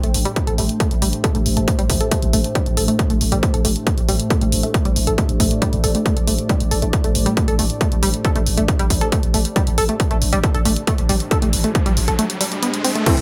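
A tight, detuned sawtooth synth riff opens this driving, industrial peak-time techno cut in A minor at 137 BPM, joined at once by a growling, overdriven 808-style bass, analog drum-machine hi-hats and crash, and a moody pad texture in the background, with a heavy, tape-warm electronic kick landing up front at 0.4 seconds. A second deep, dark ambient pad drones beneath. Sidechain pumping drives the synth, bass, pads and cymbals, and an electronic riser climbs from 11.0 seconds to an impact and a thick, bright rave stab at 13.1 seconds, all set in light digital ambience with a bright 1980s-style sheen.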